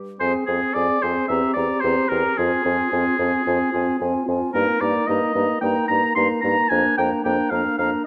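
An up-front oboe with light vibrato and a vintage character carries the second line alongside a pure, crisp-attacked flute melody in this urgent, restless excerpt from a quick classical-period wind quintet movement in Eb major at 111 BPM in straight 4/4, while a soft-attacked French horn with vibrato and a mellow clarinet set in the background fill the accompaniment and a smooth-topped bassoon anchors the bass, all moving through F minor, C7/E, Eb/G and Bb/F harmonies within a moderate recital hall reverb.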